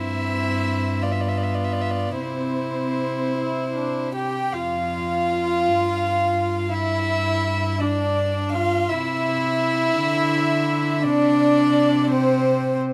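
Close, detailed microphones in a moderate recital-hall reverb frame this tender fragment of a slow romantic movement for string quartet, cut from a longer piece and played with flexible rubato in 6/8. The first violin carries the melody up front with a warm, intimate tone, light vibrato and an airy bow. Beneath it, the second violin sings a pure, floating second line, also close to the listener. The viola sits in the background with a dark, smooth-topped accompaniment, while the cello anchors the bass with a rich sound that feels somewhat distant. All four players bow sul tasto with soft attacks and sound together from the start, with a second section beginning at 4.5 seconds and the cello sounding briefly past the upper strings' close at 12.8 seconds to end at 12.9 seconds.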